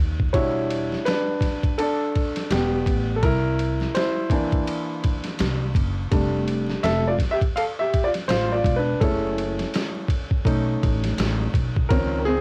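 A home cassette recording with vinyl crackle and light reverb frames this smoky, nocturnal jazz-hop fragment, cut from a longer piece, swinging at 83 BPM in E dorian. A woody, pizzicato upright bass and a gritty, pitched-down sampler-style boom bap kit, with its thumpy kick, medium-tuned snare, hi-hat and ride given a taped, big-room character, sit under a natural-sounding baby grand piano that solos up front from 0.3 to 11.9 seconds. The harmony drifts from Em7 through C7, F6 and F#m7 to B7 before landing on C#maj7.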